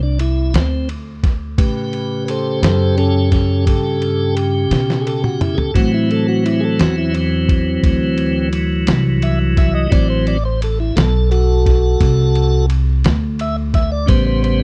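A piping, scooped tonewheel organ leads this soulful, rollicking slow blues at 58 BPM in 12/8, soloing throughout on sustained chords with key click, light overdrive and a slow rotary speaker as the harmony moves from D7sus2 to A9 and D9. Beneath it, a woody, dark pizzicato upright bass holds the low end, while a muffled, pitched-down sampler-style drum kit with a thumpy kick, medium-tuned snare, ride cymbal and toms comes in at 0.2 seconds and plays a fill from 4.7 to 5.8 seconds. All three parts sit up front in a dry, close 1970s-style studio sound touched by digital ambience, in a short cut from a longer piece.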